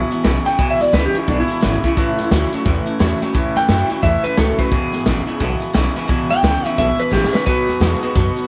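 Swinging at 174 BPM in 4/4, this rowdy, retro rockabilly cut in E major sets a twangy, slightly broken-up electric guitar melody with tape echo over a lo-fi electric guitar riff in the low register, a full-bodied, picked steel-string acoustic with finger squeak in the background, a woody, thumpy gut-string upright bass played pizzicato and an up-front vintage kit with tight kick, medium-tuned snare and hi-hat, moving from E to A and back to E before a drum fill at 7.1 seconds leads to B, with the whole band set in studio reverb.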